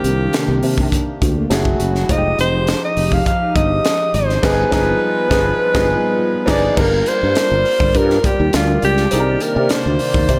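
A breathy alto saxophone with light vibrato carries the melody up front, its jazz-style lines trailing a diffuse ambient delay, in this bittersweet, urban slice of polished 1980s jazz-funk pop at 103 BPM in a straight 4/4. Beneath it, a growly fretless bass with ensemble chorus, a clear baby grand piano with short sustain, and a hollow, flute-like pad with a slow attack join a gritty, punchy fusion kit with a high-tuned snare. The chords move from Cm9 through F#m9 and Fm9 to a band accent on G7b9b13 at 4.4 seconds, then settle through Gm7 back to Cm9 in a dreamy mix soaked in plate reverb.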